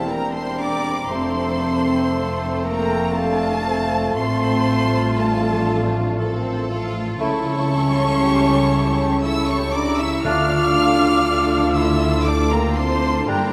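A rich violin section leads this elegiac, yearning classical excerpt in a slow, rubato three-beat lilt, singing a soft-attacked, vibrato-laden melody over a second violin line, pure distant flutes, a roomy clarinet and bassoon, and smooth-topped violas in the background. Mellow French horns hold sustained chords while a concert harp rings out fingerpicked arpeggios, and dark, woody cellos pair with even double basses on the bass line as the harmony turns toward a minor shade. At 10.2 s, very quiet timpani with soft mallets add a round touch, all of it bathed in the long, echoing wash of a vast cathedral space.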